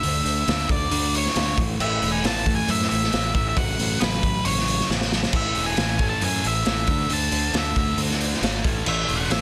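A gritty, saturated garage drum kit sits up front in a small, pumping room, driving this restless, bittersweet quiet-loud alternative rock fragment at 136 BPM in A major, while a dark octave-fuzz lead guitar carries the melody over a thick, double-tracked fuzz guitar riff in the background and a punchy, growling fingered bass with overdrive, until a bright, sludgy overdriven guitar joins the riff at 5.3 s just after a drum fill at 4.9 s, with light reverb and a dense, heavily limited master.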